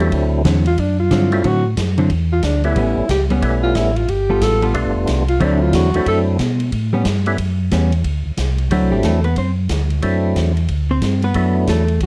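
Soulful and swinging, this short cut from a longer soul jazz organ trio piece moves in a brisk 4/4 with a swing feel and a dark, warm production in light reverb. A breathy tenor saxophone solos from 0.7 to 6.2 seconds, mellow and smooth-topped, with vibrato and scooped notes, set in plate reverb. A percussive tonewheel organ carries a melody throughout, fat and lightly overdriven, with third-harmonic percussion, key click and a slow rotary speaker, sitting up front with plate reverb. Beneath it, a second tonewheel organ plays the bass line, round and clean with chorus vibrato and its own slow rotary speaker. A hollow-body jazz guitar, dark, compressed and picked, comps up front before taking the solo spot at 8.0 seconds. A swinging big-band drum kit in a big, natural room rounds out the sound with hi-hat, ride cymbal, a medium-tuned snare and a punchy kick, while the harmony circles through D9, A9 and G9.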